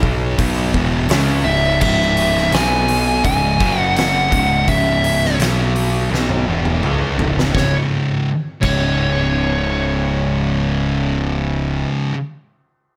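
Ominous and sludgy, this stoner and doom metal passage, cut from a longer piece, moves in a straight 4/4. Two thick fuzz guitars play the riff in the background, one warm and the other dark, while a growly, overdriven picked bass sits up front with a bright, direct-amped tone. An oversized low-tuned drum kit with a fat snare, punchy kick, crashes, hi-hat and toms sounds saturated and gritty in a pumping stone room, rolling through a fill before it stops at 8.8 seconds. A distorted fuzz lead guitar enters up front at 1.4 seconds, its high melody trailed by digital delay. The harmony circles C# minor, B5, C#5 and F#5 chords, and light reverb with small room ambience frames the mix.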